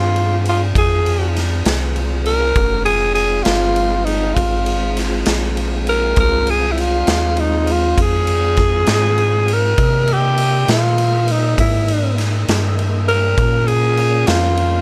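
A light reverb gives this short cut from a longer slow blues a smoky, mournful air, with the growling tenor saxophone sitting up front. In F minor at 66 BPM in a straight 12/8, the breathy, raspy saxophone carries the melody from start to finish, its subtone voice marked by scooped notes, vibrato and a smooth top. Beneath it, a clean tonewheel organ holds sustained chords, its tone clear and colored by chorus vibrato and a slow rotary speaker. A rubbery, hollow square bass with a nasal, resonant filter pluck and a moving notch supplies the dark low end, while a raw garage drum kit of kick, snare and ride sounds saturated and punchy in a bright stone room with a pumping feel and a rolled-off top. The harmony rests on Fm before shifting to C7#9 at 9.8 seconds and Bbm at 13.4 seconds.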